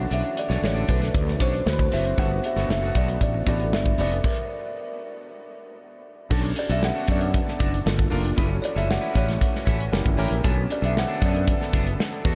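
Slick and urban, this polished 1980s jazz-funk pop passage in B minor moves at 116 BPM in a straight 4/4 and is cut from a longer piece. A woody, ringing kalimba carries the melody through a diffuse ambient delay, while a worn, slightly out-of-tune tine electric piano with analog chorus sits in the background. A twangy electric guitar at the edge of break-up picks a riff through lush chorus, and a thick, detuned sawtooth pad, very quiet, holds sustained chords from 0.3 seconds. Underneath, a growly, punchy fretless bass and an up-front studio kit with a punchy kick and medium-tuned snare drive the groove, with hi-hat and crash cymbal. The harmony runs from Bm9 through D13 and Gmaj9, pauses for a stop from 4.2 to 6.3 seconds, then passes through Bm7, Gm7, F#m7 and F#7b9 before returning to Bm7. A huge ambient reverb soaks the mix in a dreamy haze.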